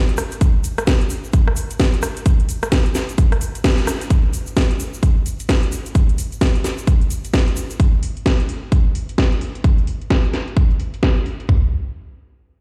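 House in 4/4 with a swaggering, gritty mood and swung sixteenths, cut from a longer piece. It opens on a drop that runs until 4.1 seconds, marked by a band accent at 3.6 seconds. One layered electronic house kit sits up front with a punchy kick and toms, while a second supplies a cracking snare, rim click and metallic hats, with low-pass filters on the hats, snare and room. Both kits have a tape-warm character from being re-recorded in a small room. A grainy, bright tube shaker stays close and dry in the background, stopping at 7.8 seconds. The mix sounds as if played on a big sound system in a bare room, with a large studio reverb.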